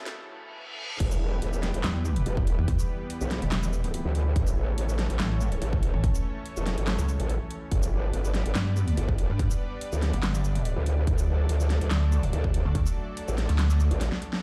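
Chaotic and heavy, this cut from a longer heavy wobble dubstep track moves in a half-time feel. A lush, warbling sawtooth pad holds sustained chords throughout, its detuned unison sheen pumping against the beat. A dubstep drum kit with a huge snare, metallic hats, handclaps, shaker and crash sits in studio reverb, while a short filtered build-up and a background reverse cymbal and noise sweep lead into the drop at 1.0 seconds. There a punchy, tape-warm electronic kick arrives up front with a growling, formant-filtered bass, and a pulsing, detuned pluck wobble bass joins at 1.8 seconds, both saturated with overdrive and chorus. The chords move from Em through A, G and D beneath the low-end assault, and a drum fill and another sweep close the passage.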